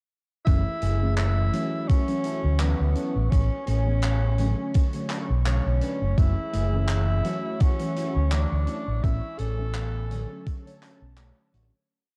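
A slow, lightly swung 84 BPM groove in 4/4 anchors this nostalgic, dreamy vaporwave piece, built on an overdriven, thumpy electronic kick and a dark, round fingered electric bass playing a syncopated riff up front, with a swinging big-band kit adding closed hi-hat and handclaps from a natural, roomy distance. A breathy, whispered tenor saxophone carries hook-like jazz phrases with vibrato and scooped notes through tape echo, while detuned, warbling lo-fi synth keys play rootless, dotted-rhythm chords under lush chorus, a thick unison pad sustains behind them, and a clean semi-hollow electric guitar adds off-beat chords through a filter sweep. The chords cycle through F#m9, Dmaj9, Amaj7 and Bm9 twice in a dark cassette-tape production that fades out from 8.1 s to 11.9 s.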